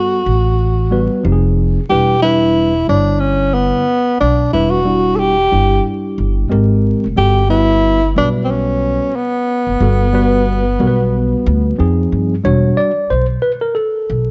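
A relaxed 4/4 groove at 91 BPM with a swung sixteenth-note feel sets up this smoky, mellow jazz-hop fragment in E dorian, tuned a little flat to A4 = 437 Hz. A pizzicato upright bass with steel strings and a woody, dark tone joins at 0.3 seconds, sitting up front in a low register. A worn, slightly out-of-tune tine electric piano supplies clean, direct accompaniment across a broad range, moving through chords such as Gmaj9, Fm7, Em7 and a colourful G#maj9. Above them, a breathy tenor saxophone takes the jazz-style lead with vibrato, subtone, scooped notes and a smooth top, playing until 11.8 seconds. The electric piano then takes a solo over the bass from 12.4 seconds, landing back on Em7. The production is dark and warm, with light reverb and a haze of vinyl crackle, and the fragment is cut from a longer piece.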